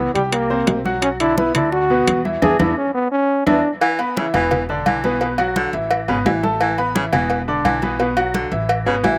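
This dry, close recording has the open, roomless sound of an outdoor set, and it catches a joyful, festive salsa groove partway through. A punchy trombone with light vibrato and a smooth top carries the melody up front until 3.7 seconds, while a brilliant upright piano, intimate and polished with audible action noise and long sustain, fills in the harmony throughout. Underneath, a thumpy, gut-strung upright bass plucks dark, woody low notes, joined by damped, thin-skinned congas, very quiet round bongos and cowbell, ringing metal-shelled timbales and agogo bells with a slapback echo, and distant claves that also carry a slapback echo. A drum fill and a band accent starting at 2.4 seconds push into the next passage. At 3.8 seconds a clear baritone saxophone enters with a second line, sounding distant and roomy yet still up front, as the chords move through Bm7, Asus2 and E5.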